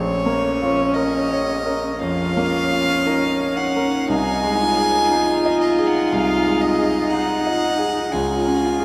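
A slow, melancholic classical movement for piano quartet opens with a rich, pure violin melody played up front by a single bowed player, sul tasto and with a soft attack, floating in the upper register. Beneath it, a clear, polished concert grand piano sits equally present, reaching down into deep bass notes with a short sustain, while a dark, intimate viola adds close accompaniment with light vibrato and an airy sul tasto bow. At 2.0 seconds a warm cello joins as a second line, distant and floating in the background, its bowing also soft and sul tasto. Set at 59 BPM in 4/4 with an elegiac, rubato feel in Bb minor, the harmony moves from Bb minor to Ab over C and settles on Db. A huge, wet reverb places the quartet in a vast, echoing space, and the passage is cut from a longer piece.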